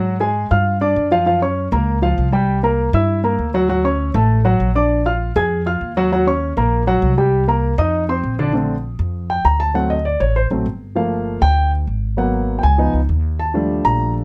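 A brisk, straight 4/4 pulse at 198 BPM drives this sophisticated, danceable Afro-Cuban jazz excerpt, cut from a longer piece. A pizzicato upright bass with steel strings sits up front, its woody, thumpy tone anchoring the low end. Alongside it, an intimate concert grand piano comps through a rich run of extended chords, moving from Fmadd9 through Gbmaj7, C9 and Ebm7. At 8.5 seconds the piano steps forward into a solo over a fresh progression that passes through Bbmaj9, Gm9 and Db9 before settling on Ebmaj9#11. The piano's natural, short-sustained sound carries audible action noise and deep bass, and light reverb gives the close, present mix a touch of space.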